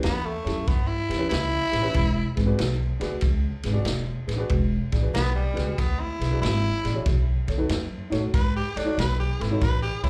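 Electric blues shuffle at 94 BPM with a rollicking, laid-back swing, this cut from a longer piece moves through A7, E7 and B7 in E mixolydian while a raspy, growling tenor saxophone takes a gritty, vibrato-laden jazz solo up front across the whole 10.1 seconds. A dark, boxy, slightly detuned upright piano with long sustain comps beneath it, both horn and piano carrying plate reverb and slapback echo. A woody pizzicato upright bass and a vintage acoustic kit of tight kick, medium-tuned snare and dark ride cymbal drive the groove, all heard as a live club gig through the venue's PA.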